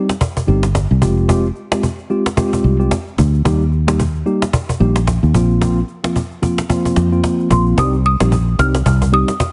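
Afrobeats at 111 BPM in 4/4, this sultry, mellow fragment of a longer piece sits in C minor with a swung sixteenth-note feel and tuning slightly below standard pitch. A clean, mellow tine electric piano carries the accompaniment up front through a Cm, Fmadd9, Eb and Bbsus2 progression. A snappy acoustic cajon with snares sounds close and dry beside it. A round, foam-muted fingered electric bass, direct and amped, sits prominently in the mix from 0.5 seconds. At 7.5 seconds, just before the harmony returns to Cm at 7.8 seconds, a woody, warm marimba with padauk bars and medium mallets takes up the melody high in its range, close-miked and full, with a delay trailing its notes. The whole recording is wrapped in studio reverb and a heavily compressed, radio-like sound whose top end is rolled off.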